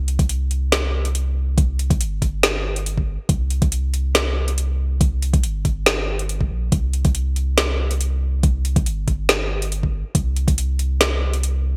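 A soft, round dub sub bass opens this heavy, meditative deep dubstep excerpt at 140 BPM in 4/4, with a half-time feel, a light 53% swing on the 16ths, and tuning at A4 = 445 Hz. A layered garage drum kit joins at 0.1 seconds, its woody snare and metallic hi-hats roughened by overdrive and framed in gated reverb, and an overdriven, knocking electronic kick enters up front at 0.2 seconds. Underneath, the sub bass moves between G1 and C2, its fast-attack, sustained triangle-and-square tone filling the low end throughout a bright, 1980s-style digital production with light reverb.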